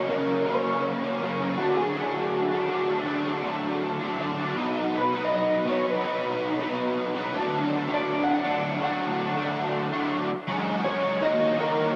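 From the first moment, an up-front, double-tracked garage guitar picks an overdriven riff with ensemble chorus, while a twangy, slightly broken-up electric guitar through a small old amp carries the melody above it, bathed in lush chorus and analog delay. This brisk, wistful yet upbeat rock excerpt moves from F# to D, then B and back to D, before closing on F#sus2 at 10.5 seconds and then D#m. A huge ambient reverb soaks the whole mix, giving it a dreamy glow.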